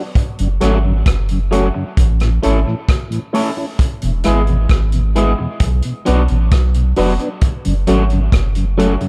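A dark, dry production frames this laid-back, meditative roots reggae excerpt at 66 BPM in F# minor, where an up-front vintage drum kit with a punchy kick and a rolled-off top and a deep, round dub sub bass anchor a slightly broken-up, twangy electric guitar with spring reverb and tape echo, reedy phased electric piano stabs, and a mellow tonewheel organ with chorus vibrato, slow rotary speaker and dub echo sitting in the background, all moving through F#m, A, E and Bm before returning to F#m at 7.4 seconds.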